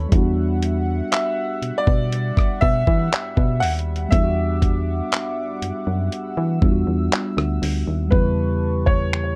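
Contemporary R&B at a slow 60 BPM in E dorian, this brief excerpt from a longer piece has a longing, moody feel. A dusty, sampler-style drum kit sits up front with a gritty, tape-warm character, its thumpy kick joined by finger snaps, handclaps, hi-hat and rim click. Beneath it, a punchy, round FM bass with a fast attack and dark decay anchors the harmony, while a mellow tine electric piano, clean and direct with a touch of phaser, supplies the chords. A chorused pulse-width pad adds a shimmering, retro haze in the background, slow to bloom and long to release. From 1.1 seconds a clear, slightly worn baby grand piano carries the melody with long sustain and a digital delay, moving over an Em9 chord before the harmony shifts to A9/E at 8.1 seconds, all in a dry, close-sounding space.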